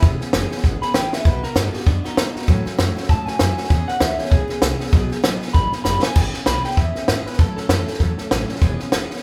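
Rollicking and rowdy, this rockabilly cut from a longer piece swings at 196 BPM in E major, with a twangy, slightly broken-up electric guitar through a small old amp taking a clean solo over the opening 6.2 seconds before the second section arrives. A fresh-stringed dreadnought acoustic guitar picks full-bodied accompaniment while a woody, thumpy upright bass with gut strings holds the low end. Up front, the compact cocktail kit sounds tight and punchy, with a high-tuned snare, crash, hi-hat and drum fills at 1.1 and 5.8 seconds, and the whole band plays live in one room with moderate studio reverb.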